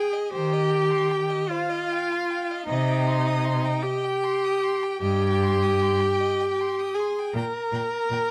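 Swaying in a slow twelve-eight with a free, rubato pulse, this brief fragment from a romantic string quartet movement carries a solemn, elegiac mood. A clear first violin sings the melody high above, yet it sits close and in the background. Beneath it, a second violin traces a rich, distant line. The viola and a focused cello sit up front, the viola supplying smooth, even accompaniment and the cello entering at 0.3 seconds with a bowed bass. All four players use vibrato, moving through Cm/Eb, Cm and Gm/Bb harmonies before the passage breaks off around 8.3 seconds. Light reverb and a dark production give the ensemble a shadowed, intimate sound.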